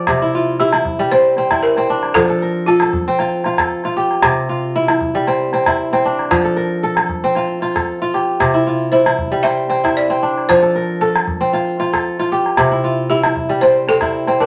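West African traditional string and xylophone music, this short excerpt moves at 115 BPM in a straight 4/4 in C mixolydian, carrying a warm, joyful mood. The kora runs through the whole passage with ringing, fingerpicked arpeggios that sit up front, crisp and acoustic across a span from C3 to D5. A small, vintage-sounding calabash keeps the percussion going beneath it, its tone band-limited. The balafon carries the melody between F4 and E5, struck with hard rubber mallets for a woody, buzzing and dark yet smooth tone; it plays from 0.6 to 3.7 seconds, drops out, and returns at 8.9 seconds through to the end. The harmony simply alternates between C and F, and a wet studio reverb gives the ensemble a gentle sense of space.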